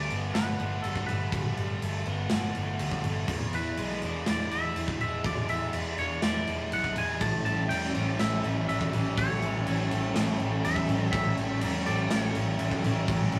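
Shoegaze and dream pop with a rock backbone, this short excerpt moves at 122 BPM in a straight 4/4 with a dreamy, wistful mood, drifting from Gmaj9 to E7 and then to A7 at 7.2 seconds. A bright, twangy, clean electric guitar carries the melody in a high register while a compressed, overdriven electric guitar plays a riff beneath it. A dark, round, foam-muted vintage bass anchors the low end, and a big acoustic rock kit sits up front with a punchy kick, medium-tuned snare and bright crash cymbal. At 7.2 seconds a shimmering, retro chorused pulse-width pad with a slow attack adds sustained chords, joined by a very quiet overdriven semi-hollow guitar playing its own riff. The whole take has a rough rehearsal-room character, with saturation, studio ambience and a moderate stone room reverb.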